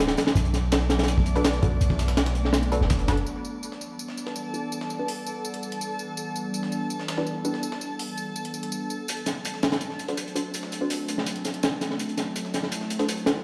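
Heard through a bare stone room on a big sound system, this short drum and bass cut from a longer jungle piece has a frenetic yet nostalgic air at 165 BPM in E minor, tuned slightly flat. A warbly, lo-fi tape-like pad holds detuned chords under chorus, phaser and its own reverb throughout, while a reversed, granular texture glows high and dreamy above it. Up front, a crunchy, saturated breakbeat kit with a punchy kick and high-tuned snare drives the opening alongside a deep, boomy 808-style bass, both dropping out at 3.2 seconds as the harmony moves from Bm7 to Em7. A compressed, pitched-up sampler-style break with tambourine, thinned by high-pass filtering, carries on beneath, and a muted, detuned dub chord stab with chorus and dub echo comes and goes under an evolving filter sweep. The crunchy kit returns at 9.1 seconds over a D7 chord, restoring its gritty, rolled-off weight to the groove.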